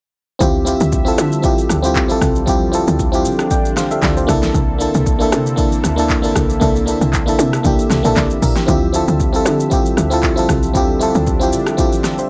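Amapiano at 116 BPM in D minor, this short cut from a longer piece carries a late-night, soulful mood, with a 55% swing on the sixteenths giving the 4/4 groove its lilt. A glassy FM electric piano sits up front, its bell-like attack and chorus shimmer voicing chords that move from Dm11 to C13 at 4.3 seconds and back to Dm11 at 8.7 seconds. Beneath it, a woody log drum bass delivers punchy, percussive notes with a fast attack and a natural decay, while a detuned sawtooth pad glows softly in the background, its chorus-thickened chords breathing with sidechain pumping. The deep house drum kit is layered and up front, pairing a punchy kick and fat snare with smooth hi-hats, handclaps, rim clicks and shaker, all re-recorded in a small room. All four parts play together from 0.4 to 12.3 seconds as a drop, and the overall sound is dry and gritty, with little reverb and a hardware edge.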